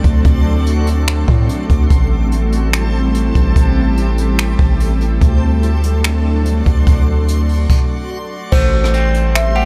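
This atmospheric cloud-rap excerpt opens on an ethereal, detuned pad with ensemble chorus, reverb and sidechain pumping, sitting over a deep, sine-like 808 bass, a polished jazz brush kit with a boomy kick, finger snaps and rim clicks, and a faint reversed, granular texture shimmering high above. At 145 BPM in a half-time feel in A dorian, the melancholic mood moves between D7 and Am7 until a stop at 7.7 seconds. At 8.5 seconds a woody, ringing kalimba melody and a twangy, slightly broken-up electric guitar playing arpeggios enter, both with tape echo.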